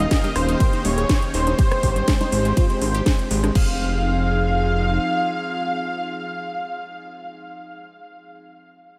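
Expansive and bittersweet, this progressive house excerpt opens on a drop where a punchy, up-front kick, a house kit of cracking snare, metallic hats, ride, crash and rim click, and background congas drive beneath a fat, detuned sawtooth bass, while a bold, nasal, warbling unison lead carries the melody over a dark, woody violin section, an airy, chorused pad, a very quiet, bright pluck arpeggio and a faint twinkling granular shimmer, with the drums stopping at 3.7 s and the bass at 5.0 s, and sidechain pumping moving the bass, pad, strings and congas inside a dreamy, reverb-soaked mix.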